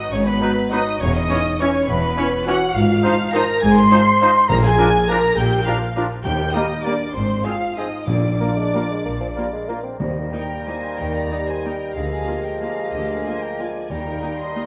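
Opening at once with rich, smooth bowed violins carrying the melody in a festive, elegant classical passage in Eb major at 171-222 BPM with a rubato 3/4 feel, an airy flute and lush second violins weave a second line while dark horns and clear trombones hold sustained chords; cellos and double basses anchor the bass beneath focused violas, a mellow trumpet adds stabs until 9.8 s, articulate hard-mallet timpani enter at 4.5 s, and a distant bassoon joins at 8.4 s, set in a moderate scoring-stage reverb and cut from a longer piece.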